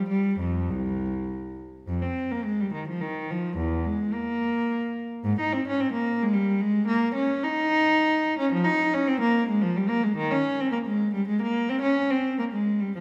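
A lone bowed cello opens this introspective, solemn baroque-style suite movement, played in a period style by a single player placed up front. The tone is dark, gut-string and reedy, with a smooth top, and the line ranges from C2 to Eb4. The movement sits in 3/4 at 108 BPM, yet the rubato feel lets the pulse breathe freely throughout. A moderate reverb of about 1.9 seconds carries the sound through a church or concert hall, giving the solitary voice a resonant, spacious setting. Tuned to A4 = 441 Hz, the 13-second passage is cut from a longer piece.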